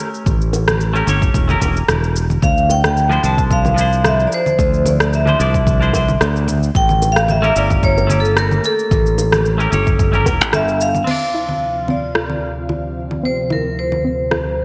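A clean, picked semi-hollow electric guitar with delay opens this smooth sunset chillout excerpt, joined almost at once by a deep house kit of cabasa, congas, crash cymbal and rim click, a punchy overdriven electronic kick, tight high-tuned bongos in the background and a growly fingered electric bass up front, before a dark, ringing hard-mallet vibraphone takes the melody at 2.4 seconds and, at 11.1 seconds, a lush detuned unison pad with chorus and phaser and a soft, round pluck arpeggio under a filter sweep arrive in a bright 1980s-style digital hall.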